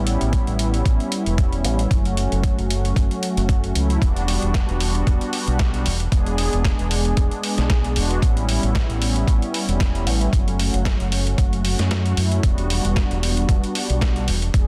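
A swung sixteenth-note groove in 4/4 drives this sleek, cosmic nu-disco excerpt, where a thumpy, gritty electronic kick sits up front beside a dusty sampler-style kit of hi-hat and medium-tuned snare, a round, punchy fingered bass with an envelope filter moves under a smooth, detuned sawtooth pad with chorus, tape echo and sidechain pumping, and the kick drops out from 11.9 to 12.4 seconds as the chords cycle through A7, F#m, Em7 and E7 in a dense, heavily limited, dry mix.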